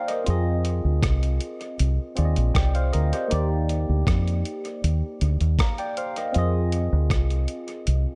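A dry, close-sounding clip of smooth, sweet lovers rock reggae at 79 BPM in a straight 4/4, where a round, punchy fingered electric bass sits up front with a thumpy-kicked, gritty sampler-style drum kit of hi-hat, kick and rim click touched by dub echo, while a barky, lightly overdriven tine electric piano through a combo amp and phaser adds quieter chords moving from Fm7 to Ebmaj7 and back.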